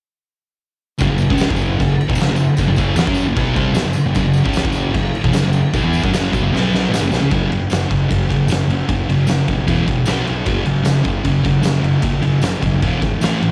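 A straight, driving 4/4 at 152 BPM pushes this raw, rowdy garage rock excerpt, built on power chords moving among F#5, B5 and E5, with a drum fill from 6.5 to 7.3 s carrying it from its opening section into a second one. Up front sits a thick, double-tracked fuzz guitar riff with cassette-tape grit, beside an oversized low-tuned acoustic kit with a boomy kick, fat snare, dark cymbals and a pumping big-room sound. Further back, an overdriven fuzz electric bass rumbles along, and a jingly, band-limited vintage tambourine runs until 13.3 s, all captured as a home recording on cassette with little reverb.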